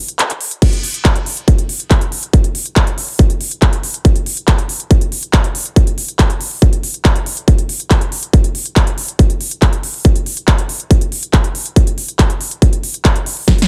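Trance at 140 BPM in a straight 4/4, this short excerpt from a longer piece feels psychedelic and hypnotic. A layered big-room dance kit with overdrive brings a punchy snare, crisp hi-hats, handclaps and crash cymbal, while a distorted electronic kick, re-recorded in a large room and sitting up front, enters at 0.6 seconds. Digital ambience surrounds the beat, and a drum fill arrives at 13.5 seconds.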